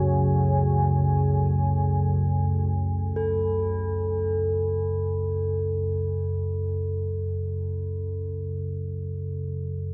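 A worn, warbling cassette-tape sound and a cavernous cathedral reverb frame this desolate dark ambient drone in F# minor, cut from a longer piece and moving in free time. A rumbling, ominous drone sits up front for the full 9.9 seconds, detuned and ring-modulated with a nasal edge, while a moody pad holds a sustained F# minor chord through chorus until 3.1 seconds. At 3.2 seconds a quartz singing bowl enters up front, bright and pure, struck with a wooden striker and ringing with slow beating to the end.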